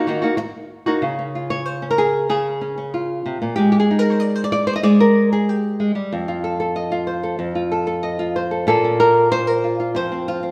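Set in a straight 4/4 at 188 BPM, this dramatic, mournful flamenco passage, cut from a longer piece, features a lone fingerpicked acoustic flamenco guitar with a dark tone, placed up front and spanning F2 to Eb5. The harmony opens on Ebm and moves through Db, F and Bbm before settling on F5 at 9.9 seconds. A wet stone-room reverb surrounds the guitar, giving the live, single-room performance a resonant air.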